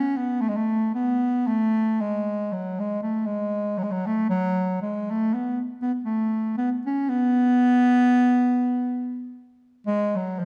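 Virtuosic and fiery, this short Balkan folk fragment unfolds in free time as a solo bass clarinet, played in a classical style, carries the whole 10.4 seconds on its own. The mellow instrument sits up front and moves between E#3 and C#4. A wet recital hall reverb with a 1.5-second decay surrounds it.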